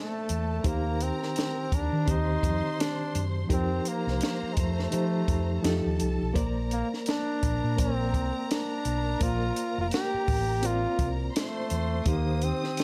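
A breathy, up-front flugelhorn carries the melody with vibrato and a smooth top in this lush 1970s-style soul excerpt in Bb major, swinging gently at 84 BPM with a smooth, warm mood. Alongside it, a bowed symphonic string section adds an expressive, soft-attacked second line. A barky, reedy electric piano with light overdrive and fast tremolo supplies the accompaniment, while a dark, round hollow-body bass and a dry cocktail drum kit with a high-tuned snare and punchy kick enter at 0.3 seconds, all set in a small room with light reverb.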